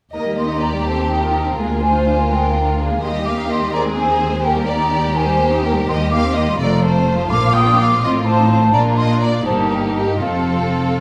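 From the opening moment, a focused, close violin section carries a graceful melody while an airy, hollow flute ensemble and an expressive second violin section add second lines over smooth, distant violas, a background cello section and a woody, lush double bass section, in this cheerful, quick classical-period orchestral movement in 6/8 at 84 BPM with a rubato feel, moving from Eb major to Bb major at 5.9 s and bathed in a wet scoring-stage reverb.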